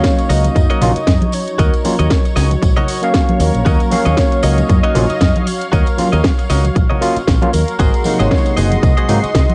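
Nu-disco with a sensual, cosmic mood and a lightly swung groove, cut from a longer piece and heard through the hazy filter of a home cassette recording with light reverb, moving from Ebm7 to Ab7 near 7.8 seconds. A punchy, overdriven electronic kick sits up front alongside a house kit with a cracking snare and hi-hat, while ringing tambourine and congas played with soft hands stay in the background, and a bright, envelope-filtered fingered electric bass enters at 0.3 seconds with sidechain pumping. A barky, gritty tine electric piano through a combo amp carries the accompaniment, a twangy, clean direct guitar riff with subtle chorus and a lush, airy detuned pad with chorus and pumping fill the middle, and a thick, mellow unison lead with a sub octave and analog delay sings the melody on top.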